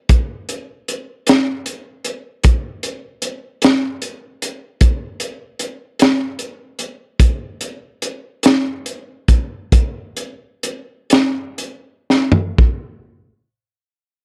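Soulful and brooding, this short blues cut is carried entirely by a crunchy breakbeat drum kit. The groove sits in 12/8 at roughly 39-51 BPM in dotted quarters, with a straight feel. The kit of hi-hat, kick, snare and toms sounds acoustic and saturated, with a high-tuned snare, a tight kick, a gritty mid-forward character and a rolled-off top, placed up front in the mix. A dry, close 1970s-style studio sound frames it, touched only by light reverb. From 5.6 seconds the tempo slows down, and a drum fill at 12.1 seconds closes the opening section. A brief new section begins at 12.6 seconds, and the kit stops shortly after, at 12.8 seconds.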